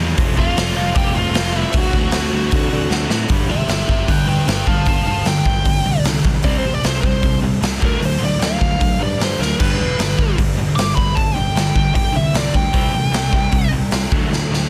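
Punk rock at 152 BPM with a rowdy, energetic drive, this excerpt sets a dark, double-tracked overdriven rhythm guitar riff over a growly picked bass sitting in the background and a raw garage drum kit that sounds saturated and up front, with a punchy kick and crash, hi-hat and snare in a pumping stone room. After a drum fill at 2.9 seconds the music settles into G major, and from 3.3 seconds a bluesy lead guitar, distorted and coated in tape echo, takes a solo over chords moving through G5, C5 and D, with further drum fills at 9.4 and 14.3 seconds. The sound is dry, dense and heavily limited.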